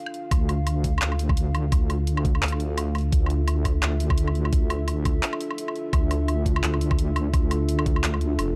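Dry, dark and warm, this tense, cinematic half-time drum and bass excerpt at 171 BPM sits on a single D minor chord, with a moody, detuned analog pad sustaining under lush chorus and sidechain pumping, a deep, up-front wobble bass thick with tube saturation, an overdriven kit of handclaps, bright hats and woodblock in a small room, and a knocking electronic kick entering at 0.3 seconds.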